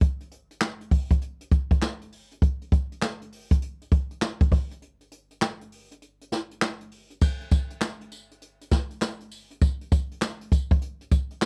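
Punchy and confident, this short R&B clip cut from a longer piece runs at 100 BPM in 4/4 with a 16th-note swing, carried entirely by an acoustic jazz drum kit played with brushes and sitting up front. The kit brings crash cymbal, handclaps, hi-hat, tambourine, a medium-tuned snare and a boomy kick, with dark cymbals and a rolled-off top giving it a warm, mid-forward character. A break arrives at 4.8 seconds before a new section begins at 7.2 seconds, all captured in a dry, close 1970s-style studio sound with a faint mains hum.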